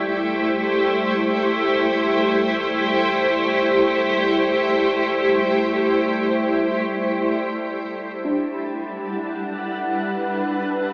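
In free time, this serene, weightless ambient fragment, cut from a longer piece, sets a cloudy, evolving granular pad up front over a deep, ominous rumbling bass drone and a calm organ-like chorused drone that drops out at 7.9 seconds, moving from Am7 to Gmaj7; at 8.2 seconds an airy, breathy wind-like noise texture and soft, round chorused pluck arpeggios in a diffuse delay arrive, all bathed in a lush hall reverb and filtered through an AM radio sound.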